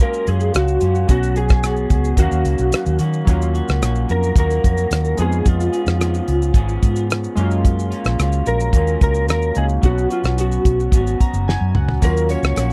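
A compressed, slightly broken-up slide guitar carries the melody in this hazy, lonely stretch of indie bedroom pop, with ensemble chorus and slapback echo, over glossy, detuned retro synth keys with a cassette-tape tint and a lo-fi electric guitar through a small old amp that wobbles with lush chorus and warbly pitch drift. A damped 70s drum kit with a fat snare and tight kick sits up front alongside a dark, round, foam-muted fingered bass. A synth-keys fill arrives at 10.9 seconds and a drum fill at 11.5 seconds, before a very quiet, jingly tambourine slips in at 12.0 seconds, all within a dry, close 1970s-style studio sound.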